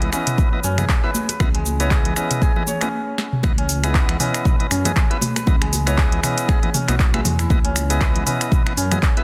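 Ringing, fingerpicked kora arpeggios and gritty overdriven tonewheel organ stabs that both pump and trail dub echo open this hypnotic afro house excerpt. Beneath them are a rumbling detuned saw bass pumping underneath, an afro-pop kit of snaps, claps, metallic hats, shaker, sharp snare and toms, and bright high-tuned congas in the background. An up-front, deep electronic kick joins and drives the groove from 0.4 seconds. There is a brief stop at 2.9 seconds and a drum fill leading into the drop at 3.4 seconds, all set in digital ambience within a dense, heavily limited master.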